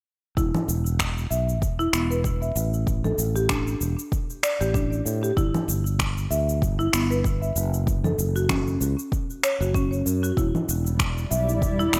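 From 0.4 seconds, a woody, dark marimba spins delayed arpeggios over a growly, up-front fretless electric bass with tube saturation and sidechain pumping, while an overdriven electronic kick and a layered, up-front kit of overdriven electronic shaker, congas and finger snaps, re-recorded in a large room, set a swung 16th-note feel at 96 BPM in 4/4. This mystical, earthy organic downtempo piece sits in E dorian, moving through E5, A7sus4, Gmaj7, F#5 and Em7 with the glossy sheen of bright 1980s-style digital production and a light reverb. At 10.9 seconds a cloudy, slowly blooming granular pad drifts in with its own reverb and pumping before the music breaks off mid-flow.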